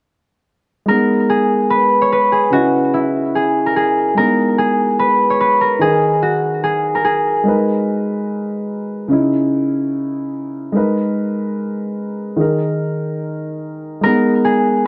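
Hip hop with a dark, hard-hitting mood at 146 BPM in a half-time feel, this excerpt in G# minor pairs an up-front, fingerpicked concert harp melody, ringing and acoustic through a low-pass filter, plate reverb and digital delay, with a mellow, boxy grand piano accompaniment that plays throughout over G#madd9, C#madd9 and D#sus4 chords; the harp drops out at 9.3 seconds during a break and returns at 14.0 seconds.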